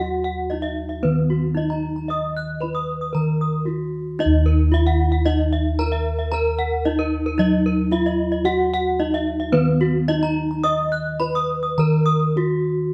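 Brilliant and hypnotic, this Balinese gamelan passage, cut from a longer piece, sets a dark, smooth bronze metallophone melody over up-front bossed gongs whose round, mellow bass is struck with padded beaters. A second metallophone, hit with horn mallets like the first, spins bright arpeggios up high until 12.2 seconds, its paired tuning giving off shimmering beats. The group plays live together in a moderately reverberant stone room, and the ringing metal tones hang in the air across two statements of the same section.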